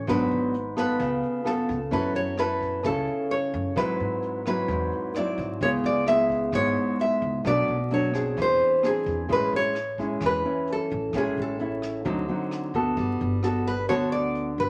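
Under a vinyl crackle and a moderate studio reverb, this sunny, sophisticated bossa nova fragment features an up-front fingerpicked nylon-string guitar singing the melody with audible finger squeak over a second, thumb-plucked nylon-string guitar with fresh strings, a woody, thumpy pizzicato upright bass, and a dark, smooth brush kit of hi-hat, tight kick and rim click tucked in the background, as the progression moves through chords like F#m7, G#7alt and Amaj7 before shifting to Gmaj9 at 13.0 s.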